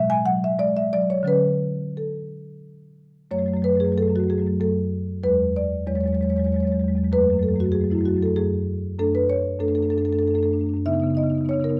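A dark, lightly reverberant recording places a woody, round marimba played with soft mallets up front in this hypnotic, flowing excerpt of a contemporary classical solo piece in a rubato triple metre, its mellow tone ranging from low to high as the harmony drifts through chords such as Dmaj7, E69 and F#madd9, with a new section opening at 3.3 seconds and carrying through to 11.8 seconds.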